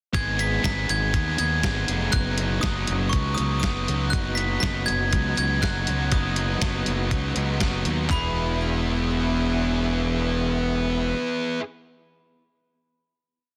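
A bright glockenspiel with brass mallets rings out a sparkling, delay-touched motif over double-tracked fuzz guitar chords, growly overdriven eighth-note bass and a gritty, thumpy sampler-style drum kit with handclaps driving an upbeat, jangly indie rock pre-chorus at 121 BPM in E major, while a very quiet tonewheel organ pad with slow rotary enters at 4.1 s and sustains after the drums stop at 8.2 s into a final E chord in a dense, dry, heavily limited mix.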